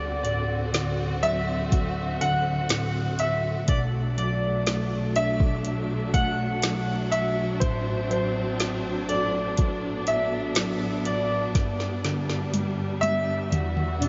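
A clear, up-front grand piano carries the melody through a lush chorus, over a mellow tine electric piano and a distant studio string section with vibrato and portamento, in this melancholic, heartbroken pop ballad at 61 BPM. A smooth, electronic R&B kit with a soft kick, woody snare and metallic hats sits close in its small room, and it breaks into a drum fill at 11.6 seconds while the chords drift from D7 through Bm7 to G and Emadd9. The dreamy mix is soaked in a huge ambient reverb with a dulled top end, and a dark, soft-attacked cello section touches a single note just as this fragment of a longer piece is cut off at 14.1 seconds.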